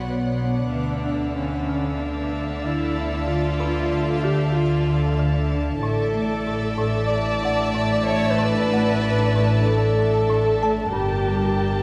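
Hushed, sul tasto chamber strings open this ominous, uneasy suspense cue at 94 BPM: a violin section carries the high melody over a second violin line and a vibrato-tinged viola accompaniment, while dark cellos and a double bass section hold the low end. A shimmering, ethereal pad with chorus, phaser and its own reverb sustains chords behind a delicate, slightly out-of-tune music box, a faint high violin texture, and a woody marimba riff from 0.1 s. The harmony moves from Bmadd9 through Dmadd9 and Asus4 to Gmadd9, set in a moderate scoring-stage reverb with a layer of vinyl crackle.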